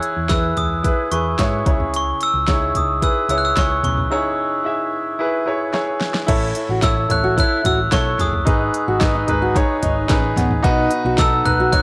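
A straight 4/4 pulse at 110 BPM drives this hopeful, uplifting piano-driven pop excerpt, with an up-front, produced electronic drum kit of knocking kick, fat snare and crisp hats beneath a brilliant, polished concert grand piano with deep bass and short sustain, and a dark, round hollow-body electric bass. A sparkling, bell-like glockenspiel struck with brass mallets carries the melody over chords moving from E to C#m, then A, G#m and B. After a break at 4.1 seconds closed by a drum fill, a warm, full-bodied fingerpicked jumbo acoustic guitar enters with a riff at 6.3 seconds, finger squeak audible, and a barely audible, close, dry group handclap lands at 11.2 seconds, all set in light reverb and studio ambience with the cassette-tape tint of a home recording.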